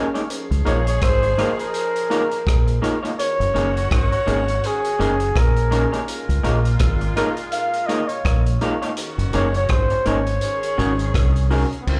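Romantic and smooth, this lovers rock reggae excerpt sways at 83 BPM in Db major with a swung sixteenth feel, as a warm, lightly vibratoed flugelhorn carries the melody over chords moving between Db69 and Gb69 before an Ab7sus4 at 10.4 seconds. A deep, round, up-front fingered bass plays alongside a vintage kit with a punchy kick and dark, rolled-off cymbals, while a slightly broken-up electric guitar through a small old amp plays stabs with subtle chorus and slapback echo. A worn, slightly out-of-tune tine electric piano sits in the background with dub echo, an edgy, punchy saxophone section adds a dub-echoed second line, and the whole band is heard as a live gig through the venue's PA with moderate club reverb.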